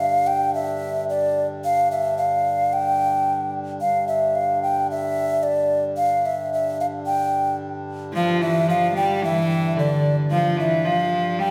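A straight 2/4 pulse at 110 BPM drives this rustic, ancient-sounding medieval dance, cut from a longer piece. A clay ocarina carries the melody from the start, its hollow, airy tone sitting up front with vibrato, tongued notes and lifted highs. Beneath it, a pedal harmonium holds a reedy, breathing drone low in the mix, close-miked and dry yet full. At 8.1 seconds a single bowed, fretted viola da gamba enters with a second line, pure and ringing with light vibrato and a soft attack, floating close alongside the ocarina. The whole plays out in a recital hall with a wet 1.5-second reverb that gives the sound the feel of a church or concert hall.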